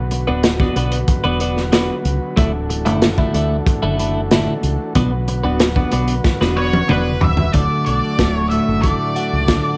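Opening on reedy, overdriven combo organ chords over a foam-muted fingered electric bass, this hazy, kaleidoscopic psychedelic rock excerpt at 93 BPM in D major brings in a bright, twangy twelve-string electric guitar riff through a phaser and a gritty, punchy breakbeat drum kit up front. Then, during a drum fill that begins at 6.3 seconds, a dark octave-fuzz lead guitar melody with wah, distortion and tape echo enters at 6.6 seconds as the chords move from Bm and Dadd9 to D, all in a small room with light reverb.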